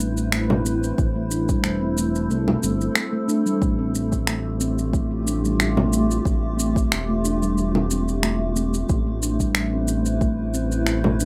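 A rough home-demo sound with moderate studio ambience frames this hypnotic, organic downtempo fragment at 91 BPM in A minor, where a blurred, evolving granular cloud pad holds sustained chords with built-in reverb and sidechain pumping, a round, ringing steel tongue drum struck with soft rubber mallets spins airy arpeggios through tape echo, a smooth sawtooth-and-triangle synth bass with ring modulation, vibrato and sidechain pumping sits up front, tape-warm electronic shaker, finger snaps and congas keep a lightly swung groove, and a deep, layered electronic kick drum enters at 1.0 seconds and stops at 10.4 seconds, over a progression that moves from Am7 to Fadd9/A and back.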